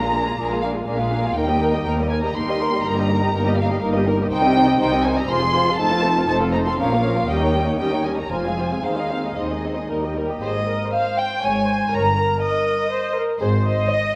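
Lively and spirited, this quick classical-period movement for string orchestra moves at 121 BPM in 3/4 with a rubato feel, opening in Eb major and turning toward Ab major from 4.3 s. Muted violins carry the melody up front, lush and veiled with vibrato and a soft attack, while a second muted violin line sits just beneath with lighter vibrato and a smooth top. Muted violas fill in the accompaniment with a dark, con sordino tone, and muted cellos and double basses share the bass, the cellos set back in the background and the basses bowed with light vibrato. The harmony moves from a Bb7 through Cm, Fm and Eb7 before a new section arrives at 10.4 s on Ab. A recital hall reverb with a 1.4-second decay wraps the ensemble in a wet, spacious sound, and the passage is cut from a longer piece.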